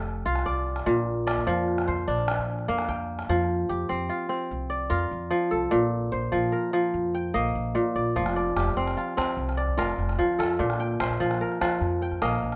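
A ringing, fingerpicked kora sits up front, spinning crisp arpeggios in F major over a woody pizzicato upright bass in this flowing, hypnotic West African string piece, set in 12/8 at 99 BPM (dotted quarters) with light reverb. A deep, distant calabash joins at 0.4 seconds, drops out at 3.3 seconds as the harmony settles into an alternation of F5 and Bb5, and returns at 8.2 seconds. The passage is cut from a longer piece.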